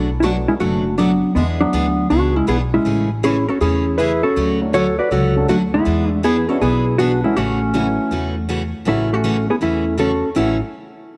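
Country western swing excerpt at a cheerful, playful 160 BPM in A major with a swung feel, led up front by a clean, compressed hollow-body electric guitar melody over a mellow classical-style clarinet second line, a bright picked dreadnought acoustic guitar and a woody pizzicato upright bass, while a dark upright piano sits in the background, dropping out after 1.9 seconds and returning at 4.6 seconds, all through Bm7–E7–Amaj7–Dmaj7–E7–A6 changes in a moderate plate reverb that moves into a new section at 8.9 seconds.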